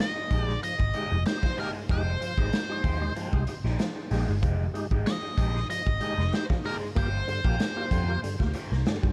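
A straight 4/4 funk groove at 95 BPM in F dorian opens this cool, funky excerpt, with a punchy, saturated raw garage drum kit up front, a round, foam-muted vintage picked bass joining at 0.3 s, a lo-fi overdriven raw garage guitar with phaser comping underneath, thick, percussive overdriven tonewheel organ stabs spun through chorus vibrato and a fast rotary speaker, and a bright, nasal lead guitar with a parked wah, overdrive and tape echo carrying the melody until 8.2 s, all over Fm9 moving to Gm7 at 7.0 s in a dark, dry production.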